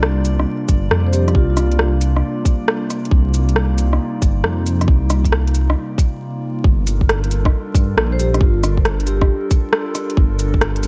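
Rainy and nocturnal, this future garage excerpt in G minor swings at 136 BPM, with a warbling lo-fi pad of sustained chords pumping against a tight, up-front electronic kick, a deep, rumbling detuned saw bass, and smooth cabasa, hi-hat and rim-click percussion, while a faint glassy harmonics texture drifts in the background until 6.2 s, a metallic, ringing vibraphone melody with analog delay surfaces briefly at 1.1 s and again at 8.1 s, and vinyl crackle hangs over a short break before the move from C7sus4 to Gm7 at 6.6 s.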